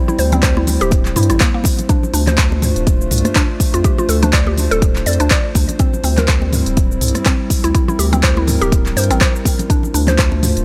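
A deep, up-front electronic kick anchors this driving, spiritual afro house excerpt at 123 BPM with a swung 16th feel, alongside a round analog bass, smooth-hatted deep house kit with handclaps, rim clicks, shaker and toms, bright high-tuned congas in the background, a woody, warbling mallet-like synth pluck spinning arpeggios through chorus and tape echo, and a moody, detuned analog pad sustaining chords that shift between C/D and Dm7. The bass, pluck and pad pump with sidechain, all in a dry, gritty hardware sound with transformer saturation.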